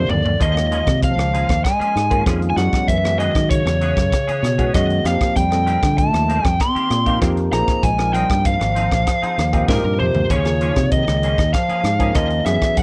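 Nocturnal and funky, this electric jazz fusion passage moves at 97 BPM in a straight 4/4 in Eb dorian, cycling through suspended ninth chords as a biting, overdriven lead guitar with slapback echo carries the melody up front while a mellow bass clarinet, with vibrato and scooped notes, sings a second line in the background. Beneath them, a barky tine electric piano with light overdrive and phaser supplies accompaniment, a round, dark fingered electric bass anchors the low end, and a clean, compressed semi-hollow guitar adds quiet stabs through an ensemble chorus. A crisp, saturated fusion drum kit with a high-tuned snare and punchy kick pumps in a small room, opening with a fill and adding another at 9.7 seconds, in this section cut from a longer piece.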